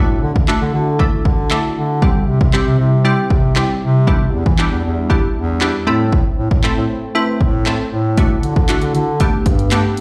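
Crisp, detuned wavetable chord stabs, a smooth sawtooth pad with chorus sitting in the background, and an up-front bass clarinet playing the bass line in a classical style all pump together from the start of this euphoric, carefree dance-pop excerpt at 117 BPM in C major. A punchy, tape-warm analog drum machine with kick, hi-hat and handclaps joins at 0.4 seconds, driving a straight 4/4 beneath chords moving from Dadd9 through C, Em7 and Am to Gadd9. The mix carries light reverb and the ambience of a big sound system in a bare room.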